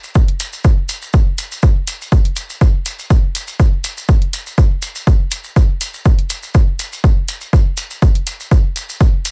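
Dry and cavernous, this deep techno excerpt at 122 BPM rides a lightly swung 4/4 groove, with a punchy, tape-warm analog kick drum up front from 0.2 seconds, an overdriven electronic hi-hat entering at 0.3 seconds, and grainy, mellow maracas sitting distant in a large room behind them.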